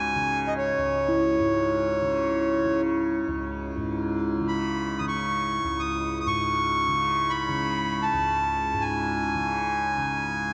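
Unfolding in free time, this haunting, meditative world piece in C# minor is cut from a longer work. A reedy, clear accordion carries the melody up front across the full 10.5 seconds, its single-reed tone touched with shimmer reverb and tape echo, while a buzzing, softly plucked tanpura holds a low drone throughout. Until 4.2 seconds a bronze singing bowl rings in the background with slow beating and a metallic yet soft felt-mallet tone, all set in a wet cathedral reverb with a dark production.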